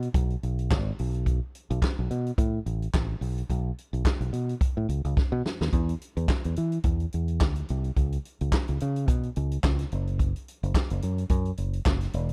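A fingered electric bass and a vintage drum kit start together, setting up a driving, glamorous disco groove in 4/4 with a light swing on the sixteenths. The bass sits up front with a round, direct tone, moving through a low range that reaches down to its deepest notes. The acoustic kit, heard in a natural studio room, pairs a punchy kick and a fat snare with hi-hat and handclaps, and it is also placed close and forward. A drum fill at 5.2 seconds leads into a new section at 5.7 seconds, and both parts carry on together to the end of this cut from a longer piece. The production is dry, with little reverb, and has a dusky, warm character that suits its retro dance-floor feel.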